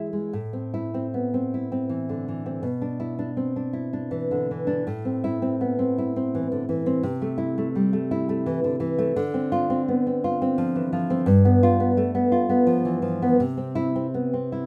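Melancholic and intimate, this romantic piece for solo classical guitar unfolds in a flexible, rubato three-beat lilt. The nylon-string guitar sits up front in the mix, its thumb-plucked tone warm and acoustic, ranging from G2 up to G#4. A light reverb gives the single instrument a gentle sense of space. The harmony moves from A minor through E5/B and Am/C, then on to Dm7 and G7 before arriving on C at 13.4 seconds. Cut from a longer piece, this passage lasts just under 15 seconds.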